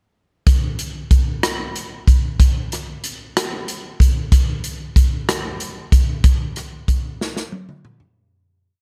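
The recording is dry, with little reverb, and its single part sits up front. This is a short, complete gospel piece in 6/8 at 62 BPM counted in dotted quarters, with a straight feel and a jubilant, uplifting mood. A swinging big-band drum kit carries the whole verse from 0.5 seconds, laying down a slow six-eight groove on hi-hat, kick drum, rim click, snare drum and toms. The kit has an airy, polished hall character, with a medium-tuned snare and a punchy kick. A fade-out begins at 6.2 seconds, and a drum fill arrives at 7.2 seconds to close the piece.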